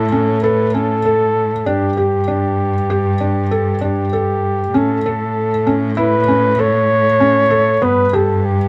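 Contemporary instrumental chamber music in an uneven five-beat meter, this short passage feels hopeful and playful. A dark flugelhorn carries the melody up front in a jazz-inflected solo voice, with vibrato, scooped notes and a smooth top to its tone. Underneath, a felt-muted upright piano plays soft, mellow arpeggios, its intimate sound carrying audible action noise from the instrument itself. A single bowed cello holds the bass, rich and focused with vibrato, sitting up front beside the horn. The harmony moves from A to Gsus2, and at 4.7 s a second section returns to A before settling on G near 7.8 s. Close, detailed microphones and a light reverb keep the trio clear and near.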